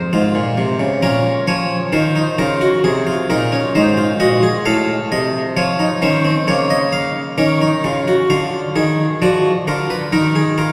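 Serious and solemn, this short excerpt from a longer piece is a baroque-style three-part fugue for solo harpsichord, moving in a steady, straight 4/4. The harpsichord plays alone for the full 10.7 seconds, spanning F2 to F5 with a plucked, round tone from a single set of strings in the Flemish manner. The instrument sits up front, yet the recording places the listener further back in a church whose long, wet reverb lingers after each note. The harmony moves from F minor through B-flat minor and A-flat to an F seventh over A, then settles on B-flat minor over D-flat. At 8.3 seconds a new section begins with a rootless B-flat seventh over D, and the passage then arrives at a bare E-flat fifth.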